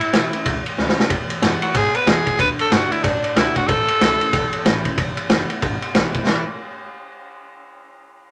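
A small room wraps this retro, rollicking rockabilly excerpt in a moderate, short ambience, with a swung feel in four. Up front, a growling tenor saxophone carries the melody with a raspy edge, clear tone, vibrato and a smooth top, playing as a solo voice until 4.7 seconds. The vintage drum kit sits just as forward, saturated and gritty with dark cymbals, a rolled-off top, a punchy kick and a medium-tuned snare, and it plays a brief fill at 0.8 seconds. Further back, a bright picked steel-string acoustic guitar supplies accompaniment, while a woody, thumpy upright bass on gut strings holds the low end with pizzicato notes. The chords move from A through E and D and back to A, and a new section begins at 6.3 seconds as the guitar, bass and drums come to a close.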